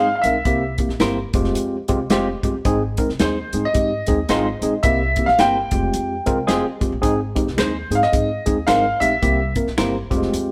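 Uptempo 1960s-style soul with a joyful, swinging feel, led by a bright, brilliant grand piano melody over a worn, slightly out-of-tune tine electric piano, compressed tremolo guitar stabs, woody pizzicato upright bass and a tight, roomy drum kit, with a very quiet vintage finger snap joining at 7.6 seconds, all heard as a live band in a moderate stone room.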